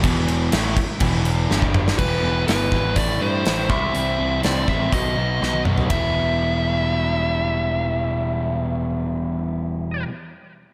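A gated 80s drum kit sits up front with a punchy kick and glittering cymbals, driving this gritty classic rock excerpt until 6.0 seconds, while a growling, overdriven picked bass and two riffing electric guitars, one crunchy and tucked in the background and one compressed with spring reverb and slapback echo, push through the whole passage. A faint double-tracked fuzz guitar and a very quiet tonewheel organ, shouting through a fast rotary speaker, add colour only in the opening 2.0 seconds, after which a dark, smooth overdriven lead guitar takes the melody up front with its own slapback echo. Lush hall reverb gives the mix a big arena sound as the chords move from Em through Am and B back to Em.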